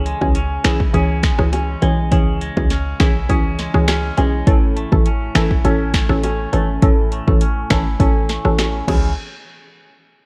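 A straight 4/4 dancehall groove at 102 BPM drives this tough, bouncy piece in C# minor, cut from a longer track. An electronic, produced afro-pop kit sits up front with a deep kick, sharp snare, metallic hi-hats, rim clicks, finger snaps and crash cymbal, while tight, high-tuned acoustic bongos add a very faint small-room layer. A punchy, short 808-style bass with a sine body and a noise layer hits with a fast attack and decays, anchoring the low end. Crisp, dark wavetable chord stabs, plucked through a low-pass filter, move from C#m to A and back, and a bright, clean, twangy electric guitar picks arpeggios alongside them, compressed and wrapped in lush chorus. A filter sweep runs through the first 9.2 seconds, the whole mix carries the warbling pitch drift of worn old cassette tape, and the harmony falls away at 9.2 seconds as the parts stop.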